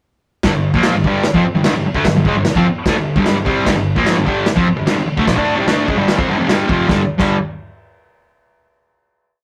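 Garage rock in G minor at 149 BPM, this short, menacing and raw piece drives a bright, fuzz-drenched power-chord riff on double-tracked, compressed electric guitar, sitting up front over a vintage acoustic kit whose punchy kick, medium-tuned snare and dark cymbals lay down a garage stomp groove. The drums sit lower in the mix with a pumping small-room sound and a rolled-off top. The whole piece has the rough, tube-saturated feel of a rehearsal-room recording, and the riff gives way to a final G5 chord at 6.9 seconds.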